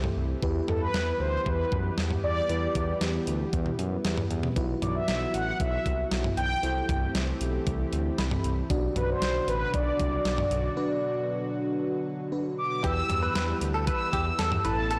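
A nocturnal, driving synth-pop passage opens with a mellow synth brass melody, round and dark with a soft attack and a filter sweep, carried on chorus and delay up front. Beneath it, a chorused FM electric piano with a soft pad layer adds a dreamy, decaying accompaniment, while a thick, detuned unison pad sustains in the background. A smooth sawtooth-and-triangle synth bass with transformer saturation sits up front beside a clean 12-bit drum machine, whose thumpy kick, medium-tuned snare, hi-hat and toms have a sampler-style, small-room character. Over chords moving from Em through Bsus4, Am7 and Bm, the electric piano plays a fill at 7.9 seconds, and a break follows at 10.8 seconds before the harmony returns to Em. At 12.8 seconds a bright, twangy, direct-recorded clean electric guitar enters with a picked, scooped second line through ensemble chorus and delay. The whole mix is blown-out and overdriven, set in a moderate, lush hall reverb.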